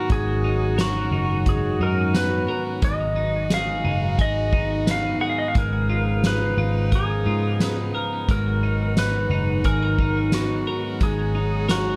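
In a straight 4/4 pulse, a soft-mallet drum kit with a boomy kick, fat snare, hi-hat and tambourine sets a melancholic, ethereal dream pop groove in a big room, anchored by a round, foam-muted vintage electric bass. An up-front twelve-string electric guitar rings out twangy arpeggios through lush chorus and delay, while a clean lap steel carries the slide melody with volume swells and delay over a tight classical-style brass section holding sustained chords with light vibrato. The harmony moves from Bmaj7 to G#m7 and C#13/G# before returning to Bmaj7, all within a dark, lightly reverberant production cut from a longer piece.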